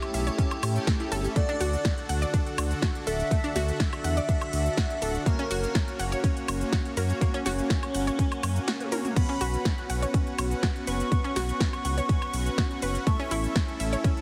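This progressive house cut opens on a dreamy, expansive drop, with a velvety synth lead carrying the melody in the background alongside an airy second lead line, over soft, evolving supersaw stabs, a breathy pad, and bright arpeggiated analog plucks, all pumping against the sidechain and trailed by tape echo on the leads, stabs and plucks. Underneath, a round, deep analog bass and a punchy, up-front kick anchor the groove, while an overdriven big-room kit adds crisp hats, snare, shaker, woodblock and cymbals, with a drum fill at 8.8 seconds leading into a second drop at 9.2 seconds. The mix is heavily compressed with a radio-like sheen and light digital ambience.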